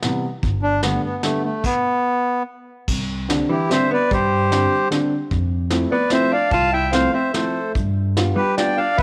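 A lilting three-beat waltz with a loose, rubato sway drives this charming, whirling musette piece, cut from a longer work and opened by a mellow, woody upright piano and a vintage brush kit with dark cymbals and a rolled-off top. A pizzicato upright bass joins at 0.4 seconds, and the reedy single-reed accordion takes the melody up front at 0.6 seconds, clear and smooth with a dry tuning, over chords moving from Gadd9 through Csus2 and Fmaj7 to G7. At 3.5 seconds a clean, compressed hollow-body electric guitar adds a fingered second line, and the music sits in a light studio reverb.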